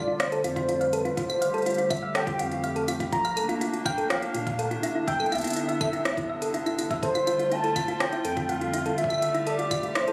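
Wistful and faintly glitchy, this IDM excerpt moves at 123 BPM in a straight 4/4 feel in F major, cut from a longer piece. A velvety synth lead carries the melody, its smooth sawtooth tone roughened by vintage 12-bit sampler grit and trailed by delay and chorus, with a touch of vibrato. Beneath it, a hollow, flute-like pad holds sustained chords while a tine-like, thumb-piano-style pluck spins round, dark arpeggios through tape echo. A deep, round sub bass enters at 0.2 seconds alongside an organic electronic kit of claves, crisp hi-hats and rim clicks, and a soft electronic kick arrives at 0.6 seconds, both drum parts sitting in studio reverb. The harmony drifts from Fadd9 through Bbmaj9 and Cmaj9 before returning to Fadd9, all set in a lush hall and captured with the intimate, slightly compressed character of a phone recording in the room.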